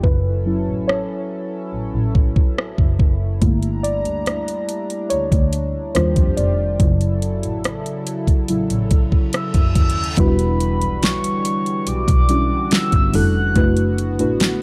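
A smooth, electronic R&B drum kit sits up front in this tender, romantic contemporary R&B excerpt, with a knocking kick, fat snare, rim click and metallic hi-hats carrying a tape-warm sheen at a slow 71 BPM in a straight 4/4. Beneath it, a distant bowed double bass sings with expressive vibrato and portamento, while muted, felt-like synth keys add intimate, decaying chords with a dark, chorused tone and a filter sweep. A shimmering, retro pulse-width pad holds sustained, detuned chords that pump gently with sidechain compression, moving through F#m7, Gm6 and Ebmaj9 before settling toward Em9 and D69/F#. An electronic reverse cymbal rises at 9.3 seconds, and a mellow, round, octave-layered synth lead enters at 9.4 seconds, its high melody coloured by chorus, vibrato and tape echo as the music moves into a new section at 10.2 seconds. The whole production is dark and enveloped in digital ambience.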